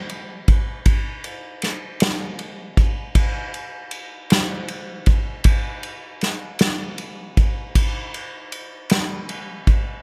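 Melancholic and dramatic, this short pop excerpt, cut from a longer piece, moves at a slow 52 BPM in 6/8 with a straight feel. The only part is an acoustic drum kit, heard from 0.1 to 9.9 seconds, built from kick drum, snare drum and ride cymbal. Played with bundle sticks, it pairs a punchy kick with a medium-tuned snare. The kit sits up front in a studio room, and the sound is dry with little reverb. The whole passage forms a single section of about ten seconds.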